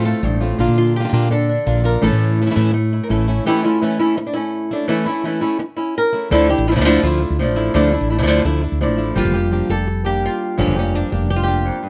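Flamenco at a brisk 168 BPM in A phrygian dominant, passionate and fiery, heard as a short cut from a longer piece. One fingerpicked acoustic flamenco guitar carries the dark, up-front melody while a second, bright with fresh strings, adds stabs, and a woody fretless electric bass with a round, hollow-body tone plays beneath them, dropping out from 3.4 to 6.3 seconds. The close, detailed recording has little reverb, and the harmony moves from F/A and Bb through A to Dmadd9 and a closing Gm7.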